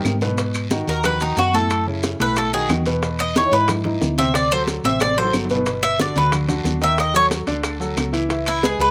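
Joyful, danceable salsa at 182 BPM, this brief excerpt features a picked, metallic Cuban tres soloing up front from 0.9 seconds over an intimate grand piano with audible action noise, a dark, round hollow-body electric bass, and background percussion of ringing congas, tight bongos, woody claves, raspy guiro, grainy maracas and metal-shell timbales with slapback echo, with drum fills opening the passage and returning at 5.0 seconds, all moving through chords from G#m7 to C#m7 in a dry, outdoor sound.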